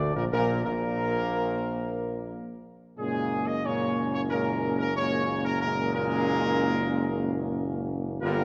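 This regal, triumphant classical brass passage, cut from a longer piece, features a mellow, vintage-toned trumpet section carrying the melody up front at 91 BPM in a straight 4/4, joined by a dark, distant French horn section and a bright, close-miked trombone section sitting in the background, both holding sustained chords. A warm tuba anchors the bass, and the horns, trombones and tuba each carry a light vibrato, while the harmony moves from Bb to Gbadd9 at 3.0 seconds. The whole ensemble plays from 0.0 to 8.4 seconds in a wet concert hall reverb that lends the horns and tuba a roomy glow.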